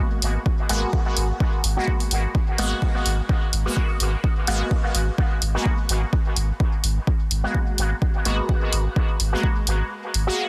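Meditative and nocturnal, this dub techno excerpt moves at 127 BPM in 4/4 with a light swing in G# minor, built on a deep, round sub bass warmed by tube saturation and pumping against a punchy, up-front electronic kick, with a layered electronic hi-hat sitting above. From 0.7 seconds a juicy, detuned sawtooth polysynth plays bright resonant stabs between G#3 and F#4, its filter sweeping through chorus, phaser and dub echo as it pumps with the kick. The dense, heavily limited master sits in a digital ambience, and the kick drops out at 9.9 seconds, leaving bass, hi-hat and stabs to close the cut.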